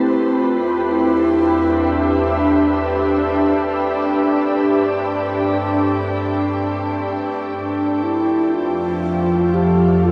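Ambient music in free time with a luminous, weightless mood, where a breathy, hollow alto flute melody floats through diffuse delay over a pure, organ-like pad with ensemble chorus and a filter sweep moving through Em7, G and F, while a reedy harmonium drone sits in the background and a deep, ominous rumbling bass drone enters at 0.8 seconds, all bathed in a shimmering reverb and the warbly pitch drift of worn cassette tape in this brief cut from a longer piece.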